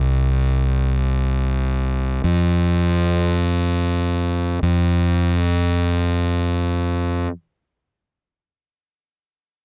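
Set in a 6/8 metre with a straight feel, this short rock fragment, cut from a longer piece, rolls forward in broad dotted-quarter pulses. A fingered electric bass carries the whole passage alone, playing from 0.0 to 7.3 seconds in a low register between C2 and F2. Its tone is fuzzy and overdriven, with a direct, amped character that sits up front in a dry space with little reverb. From 2.2 seconds onward the music gradually slows, stretching the final moments of the phrase. Despite the gritty bass sound, the mood comes across as hopeful and soaring.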